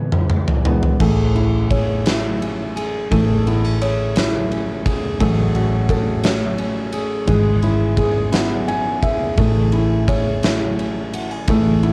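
An intimate grand piano with audible action noise opens this tender, romantic six-eight pop ballad alongside a drum fill; at 1.0 seconds a jumbo fingerpicked steel-string acoustic guitar spins full-bodied arpeggios over a round, foam-muted, dark electric bass, while a huge arena drum kit with a punchy kick, medium-tuned snare and big-room crash, ride and toms sits up front, the piano adds a fill at 8.3 seconds, and the piano, guitar and drums carry a cassette-tape grain within a home recording with moderate booth ambience.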